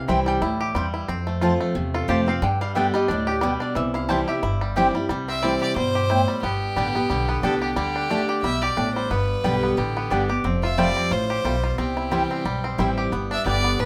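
Rustic and virtuosic, this swung bluegrass excerpt in C major moves at a brisk 180 BPM, with a full-bodied, up-front picked acoustic guitar, twangy fingerpicked banjo arpeggios, mellow double-string mandolin stabs and a thumpy, dark pizzicato upright bass on gut strings holding the groove throughout. A metallic, nasal lap resonator guitar, played with a steel bar and fingerpicks, takes the opening solo until 4.7 seconds. At 5.3 seconds a close, earthy bowed fiddle with light vibrato steps forward to carry the melody, all in a light reverb.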